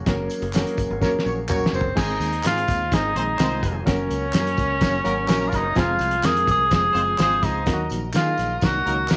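This excerpt of uptempo, danceable 1960s-style soul opens with a very quiet, bright tonewheel organ holding chords through a slow rotary speaker and a punchy, foam-muted fingered bass, joined almost at once by a barky electric piano with light overdrive and fast tremolo, a cloth-damped, thuddy drum kit with a fat snare and dark cymbals, and tambourine with handclaps. A drum fill runs from 1.0 to 2.0 seconds as a mellow horn section, distant and doubled in octaves, adds a second line in the background, while a vintage-toned tenor saxophone with light vibrato and slapback echo carries the melody up front from 1.7 seconds. Everything sits in a small room with light reverb.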